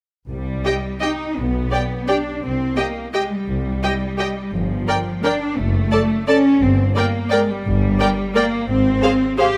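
This close, detailed string recording sits in light reverb, cut from a longer classical piece in C minor that moves at 172 BPM in 3/4 with uneven, rubato beats and a dark, bittersweet mood. A smooth, vibrato-laden violin section carries the melody while a rich, expressive second violin section sounds more distant beneath it, and a lush viola section fills the accompaniment. Up front, a focused cello section and a soft-attacked double bass section anchor the bass line from 0.3 seconds through harmonies that pass from Cm and G/B to Gm and a rootless Fm/Ab near 8.7 seconds.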